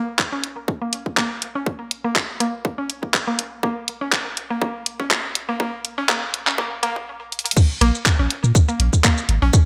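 A swung 122 BPM pulse drives this sparse, quirky minimal techno excerpt in Bb minor, where a tight, up-front electronic kick and a garage kit of bright hats, handclaps, shaker and crash cymbal with gated reverb frame a woody, mallet-like FM synth pluck with chorus, digital delay and sidechain pumping, which builds under a filter sweep until a drum fill at 7.3 seconds and a drop at 7.6 seconds, when a deep, punchy sine sub bass enters at 7.8 seconds, all set in a plate-reverb space with a bright 1980s-style digital sheen and faint mains hum.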